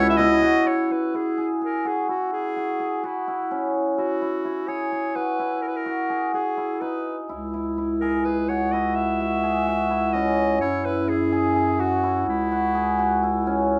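Contemporary chamber music in an uneven seven-beat metre opens with clarinet, cimbalom, bass clarinet and a muted string section together, while a small, bright frame drum sounds very quietly at 0.2 seconds. The dark, con sordino strings hold a veiled, distant chord with vibrato before dropping out at 0.6 seconds. The bass clarinet falls silent at the same point. That leaves the up-front cimbalom, which rings and shimmers through hammered arpeggios, and the bright clarinet, which carries an urgent yet pensive solo melody across the whole passage. The soft-attacked, mellow bass clarinet returns at 7.3 seconds to supply a classical-style bass line beneath the harmony as it moves from minor chords through a major seventh and a suspended chord. A moderate studio reverb gives the ensemble a natural sense of space in this section cut from a longer work.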